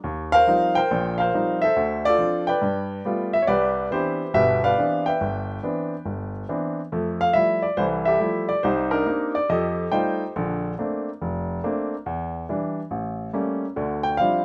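Solo jazz with a relaxed mood and a gently swung feel, played on a baby grand piano that sounds warm, natural and up front across a span from deep bass to the upper middle register. The lush extended harmonies open on an Eb69 and settle into Cmaj9, then the music moves into a new section at 6.9 s that shifts through Fmaj9, Bbmaj9 and an A7b9 before landing on Dm11. A light reverb gives the piano a touch of room around it in this short passage cut from a longer performance.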